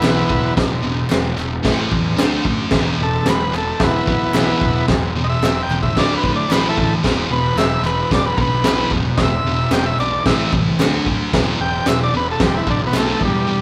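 Raw and menacing, this garage rock excerpt in E minor drives at 112 BPM in a straight 4/4, with an overdriven, buzzy transistor combo organ taking a solo up front across the full 13.6 seconds over chords moving among E5, A5 and D5 before settling on E minor. A thick, double-tracked fuzz guitar grinds out the riff beside a growly, punchy fuzz bass, while a crunchy breakbeat kit with a high-tuned snare, punchy kick and dark cymbals sits saturated and up front. Crisp group handclaps stay in the background, and the whole band sounds as if playing live in one large studio room with moderate reverb.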